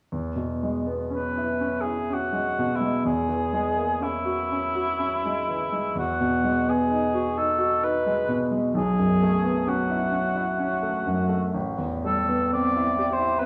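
A triple metre stretched by rubato and uneven beats carries this pastoral, luminous impressionist duo, cut from a longer piece. A bright concert grand piano with deep bass and a short sustain sets out the accompaniment from 0.1 seconds, moving through lush extended chords before settling on a minor ninth, and at 1.1 seconds a mellow cor anglais enters up front with the melody, its soft attack and light vibrato shaping a vintage classical line. Recital hall reverb and small room ambience surround the duo, while the sound of worn, old cassette tape adds a warbly pitch drift.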